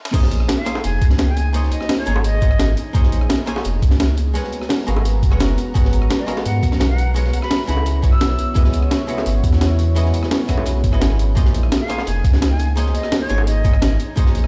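Lush and rolling, this liquid drum and bass drop at 171 BPM in Bb phrygian rides a deep, round sine sub bass up front and a thumpy electronic kick under a gritty sampler-style breakbeat kit with a high-tuned snare and a saturated, dark second break tucked in the background, joined by tight vintage bongos, while a clean hollow-body archtop guitar with digital delay and a detuned sawtooth analog pad pumping with the sidechain carry the Bbm11, Abm11 and Dbm11 chords beneath breathy, expressive concert flute phrases entering at 0.6 s, 6.2 s and 11.8 s, the mix sounding as if played on a big sound system in a bare room.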